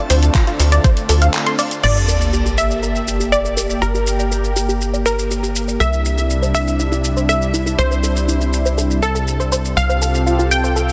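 Driving and expansive, this progressive house excerpt at 121 BPM in G dorian opens over a lush, warbling unison pad with chorus and sidechain pumping, a faint reversed granular swell, a tight detuned arpeggio synth with filter sweeps and digital delay, and a punchy sawtooth sequencer bass, while an overdriven, knocking electronic kick sounds only from 0.3 to 0.9 s. After a break at 1.3 s, a bright, detuned unison pluck melody with cassette tape colour takes the lead from 1.8 s alongside a sub drop impact, as the overdriven pop kit of handclaps, shaker, hi-hats and crash cymbal, present from the opening, drives the groove through chords moving from Dm7 to Gm, C and Fadd9/C. The mix sits in a huge ambient reverb and is densely limited for a loud, modern finish.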